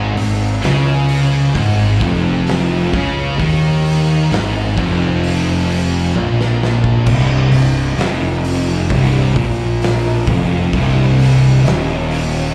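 A slow, straight 4/4 pulse at 65 BPM drags this ominous, sludgy stoner and doom metal passage forward in C phrygian, cut from a longer piece and heard as a live gig through the venue's PA with a light club reverb. Two thick fuzz guitars sit in the background playing a low riff, one darker in tone than the other, while a bright, double-tracked tight distorted guitar with slapback echo adds its own riff until 7.1 seconds. Up front, a growly fingered electric bass with overdrive and fuzz carries the bottom of the sound. An oversized, low-tuned acoustic drum kit fills a pumping stone room with a punchy kick, fat snare, dark cymbals, hi-hat and toms, and a drum fill from 6.1 seconds leads into the repeat of the riff. The harmony moves from an Ab5 power chord at the start to C minor at 7.1 seconds.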